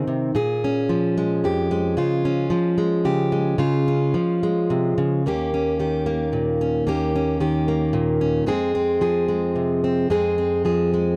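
Folk solo fingerstyle piece in 3/4 at 111 BPM and Eb mixolydian, hopeful and gentle, where a bright, up-front plugged-in steel-string acoustic guitar fingerpicks from Eb2 to Ab4 through Bbm7, Db, Eb7 and Fm, shifting to a new section at 5.2 seconds, with light reverb in a dry, close 1970s-style studio sound on this short cut from a longer piece.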